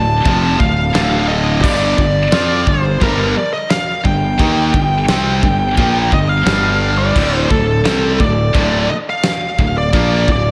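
Heavy metal in D phrygian at 87 BPM in a straight 4/4, this short clip cut from a longer piece feels dark and aggressive, moving from D minor to G5 at 1.6 seconds and back to D minor at 7.2 seconds. Up front, a dark, high-gain lead guitar carries the melody between A4 and A5, its distortion treated with slapback echo and digital delay. Beneath it, two picked guitars play the riff from D2 to F4: a bright, overdriven electric guitar with its own slapback echo, and a high-gain distorted guitar sitting in the background. A growly, fuzz-laden fingered bass, direct and amped with overdrive, anchors the low end from D1 to F2. The acoustic drum kit enters at 0.3 seconds with a fat snare, tight kick, crash and china cymbals, its small-room character set against a lush hall reverb that gives the mix a big arena sound.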